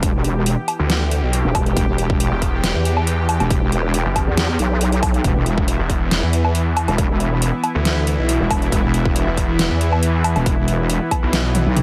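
This heavy, chaotic wobble dubstep piece in E minor opens at 138 BPM in a half-time 4/4 feel, with a punchy overdriven electronic kick, an up-front drum kit of deep snare, metallic hi-hats, toms and woodblock, a resonant wobbling bass with chorus, and a lush, bright detuned pad holding sustained chords that pump against the sidechain. At 0.8 seconds a growling, aggressive distorted saw bass with a moving notch joins the wobble bass, the two stacking into a thick, saturated low end on a single E minor chord. The kick drops out at 11.2 seconds just before a drum fill at 11.5, all in a dry, close mix cut from a longer track.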